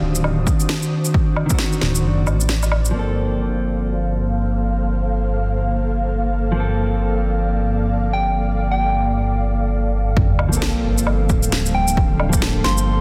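A wistful, nocturnal future garage excerpt in swung 4/4, where a mellow, clean electric guitar with spring reverb and delay opens under a filter sweep over an ethereal, airy pad with 12-bit grit and a rumbling detuned saw bass, all three pumping against the sidechain, while a punchy overdriven kick and an electronic shaker, woodblock and woody snare appear in brief bursts before a round, keys-like FM lead with dub echo enters at 8.1 seconds and a very quiet sub drop marks the impact at 10.2 seconds.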